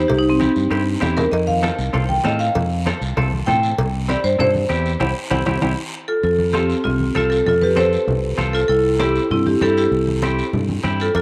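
A bright, hard-mallet marimba opens this danceable, festive cumbia excerpt in C major at 196 BPM, taking a solo over a punchy, up-front fingered electric bass, with ringing, low-tuned congas in the background and a raspy guiro entering at 0.1 s. Close, dry metal-shell cowbell and timbales drive the first half, with drum fills and a band accent, before dropping out at 5.7 s, while a clean, picked semi-hollow guitar adds compressed, hollow-body accompaniment from 0.4 s. The harmony moves between C and F, and a moderate spring reverb adds sheen to the groove.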